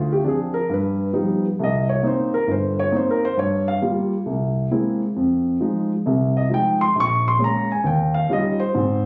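Warm and playful, this 9.1-second swung jazz fragment at 134 BPM features a dark, mellow concert grand piano playing solo and up front. Its deep bass and smooth, vintage tone move through minor and altered dominant chords from Dm7b5 to Eb9, heard through a phone recording of a club room with modest reverb, compression and a dulled top end.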